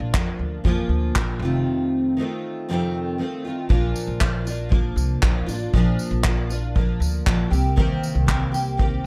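A straight 4/4 pulse at 118 BPM drives this easy-going, sunny acoustic pop excerpt in Bb major, where an up-front unplugged drum kit played with bundle sticks brings a punchy kick, handclaps and tambourine, a woody pizzicato upright bass holds the low end, and a full-bodied, double-tracked picked steel-string dreadnought guitar sits up front over chords moving from Bb to F7 and later Cm7, with a break from 1.7 to 3.7 seconds, all in a dry, dark, warm production.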